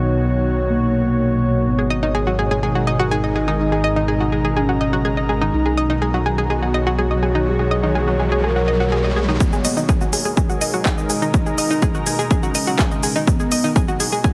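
An overdriven, up-front electronic kick lands at 9.4 seconds alongside a techno drum kit of handclaps, smooth hi-hat and shaker, as this cinematic, hypnotic melodic techno excerpt moves from its opening section into a build-up. Before that, a round analog pluck spins chorused, delayed arpeggios over a dark, octave-layered synth lead with vibrato and phaser, a menacing detuned saw bass with a filter swell, a bright, morphing wavetable pad and a breathy, airy pad. Every melodic part pumps with sidechain, filter sweeps move across the lead and one of the pads, and a background riser from 7.2 seconds leads into the drums, all inside a heavily compressed, radio-like sound with light digital ambience.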